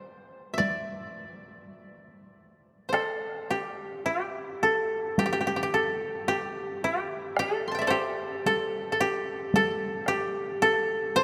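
Loosely rubato in 4/4, this short, austere and calm excerpt of traditional Japanese chamber music is led by a fingerpicked koto whose woody, up-front melody spans G4 to C6 and moves into a new section at 2.9 s. Solo taiko drums, struck with heavy sticks and miked close, join at 0.6 s and stop at 10.3 s, sitting quieter beneath the koto. The whole performance is bathed in a long cathedral reverb, with a 5.7-second decay that gives it a spacious, hallowed air.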